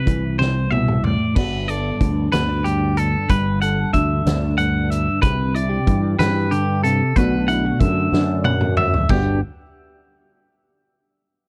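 Set in a lilting 6/8, this playful, wistful snippet of math rock and midwest emo drifts through C6, Gmaj7, Cmaj9 and Bm7 chords over a loose, roomy acoustic drum kit with dark cymbals, a fat snare and a tight kick, which plays fills at 0.4 and 8.1 seconds. A dark, fingered electric guitar with ensemble chorus carries the accompaniment, while a bright, twangy, up-front clean guitar picks high arpeggios above it. Underneath, a growly fretless electric bass sustains low notes with a subtle chorus, and the whole piece sits in a small room ambience.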